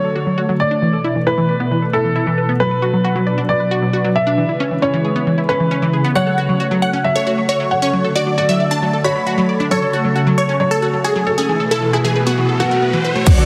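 A silky, string-like pad with ensemble chorus and phaser, a bright, detuned unison pluck playing arpeggios and an intimate baby grand piano with audible action noise carrying a second line open this euphoric, emotional uplifting trance excerpt at 135 BPM, before a punchy supersaw stab takes the melody at 6.2 seconds, a riser builds from 11.2 seconds, and a punchy kick and metallic hats arrive with the impact at 13.3 seconds, followed by a plucky, wave-folded bass at 13.4 seconds, all under a heavily compressed radio sound.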